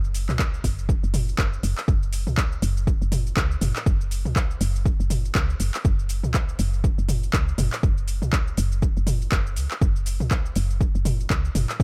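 A digital ambience surrounds this short cut from a longer afro house piece, which moves at 121 BPM in 4/4 with a 58% swing on the sixteenths and carries a spiritual, hypnotic mood. An overdriven electronic kick drum sits up front with a deep, layered punch, arriving at 0.4 seconds and holding through to the close at 11.8 seconds. Beneath it, a deep house drum kit plays from the start with handclaps, metallic hi-hats, shaker and toms, its produced, electronic layers also pushed through overdrive. A woody FM bass anchors the low end between F#1 and C#2, its soft, round tone striking with a fast attack and then decaying into a dark tail. Sidechain pumping on the bass gives the groove its breathing pulse.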